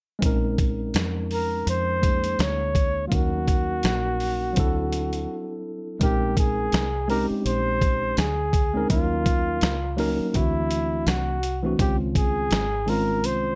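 A breathy, whispered flugelhorn carries the melody from 1.3 seconds with vibrato and a soft attack, up front and intimate, in this cool, mellow jazz-hop excerpt at 83 BPM with a lazy 16th-note swing. Beneath it, a worn, slightly out-of-tune tine electric piano with light overdrive moves through Bbm11, Ebm7 and D9 before closing on Dbmaj9, while a dark, round fingered electric bass sits low. A gritty, compressed sampler-style drum kit with a thumpy kick and tape-warm grit stays prominent, and a short break arrives at 5.3 seconds, all in a dry, close sound.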